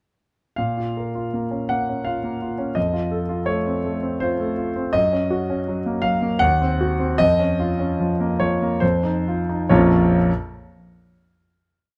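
A vintage-toned concert grand enters at 0.6 s with a single-line melody over rippling figuration in this brooding, passionate romantic character piece in Bb minor and 3/4, its rubato pulse of 65-86 BPM slowing from 3.8 s as the harmony moves through Bbm, F, Gb and Cdim/Eb toward a final Bbm chord at 9.7 s, the smooth, deep-bassed piano sitting up front in close, detailed sound with light reverb.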